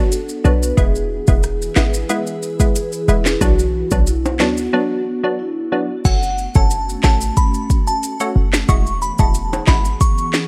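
A straight 4/4 dancehall groove drives this sunny, summery cut, anchored by an up-front afro-pop kit with a deep kick, sharp snare, metallic hats, claps, rim clicks and crash, all roughened by vintage 12-bit sampler grit, alongside soft-handed maracas and timbales and a punchy, tight 808-style bass. Crisp, detuned wavetable chord stabs and a dark, ethereal FM pad with ensemble chorus, phaser and sidechain pumping carry the Bm and E harmony, while a mellow, airy vibraphone with soft mallets and digital delay rings through the opening until 6.0 s, with a break beginning at 4.7 s. At 6.1 s the chords shift to F#m and Eadd9 as a crystalline, warbling synth bell takes the melody with chorus and digital delay.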